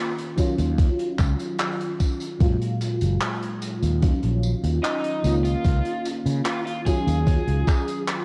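Hazy cassette-tape sound with light small-room reverb wraps this woozy vaporwave fragment, where a round, soft FM electric piano with ensemble chorus and analog delay sits up front beside a thumpy, sampler-style electronic kick and a growly, punchy fretless bass, a modern studio kit adds handclaps, hi-hat and tambourine in a pumping room, and at 4.8 s a dark, overdriven lead guitar through a small cranked amp enters with its own analog delay over chords moving among Ebm9, Gbmaj9 and Db69.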